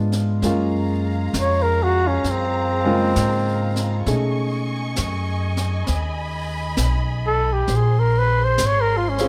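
A softly reverberant studio recording opens this melancholic, wistful jazz ballad excerpt, moving at a slow 66 BPM in 4/4 with a swung feel as a mellow, close-miked trumpet enters at 1.4 seconds to carry the melody up front, colored by vibrato and scooped notes. Beneath it, a woody, thumpy pizzicato upright bass and a natural-sounding grand piano lay down the harmony through Gbmaj9, B13 and Bbm9, while brushes on a high-tuned snare and hi-hat whisper from the kit. A lush bowed string section, expressive with vibrato and portamento and a smooth top, sustains chords quietly behind from 0.4 seconds.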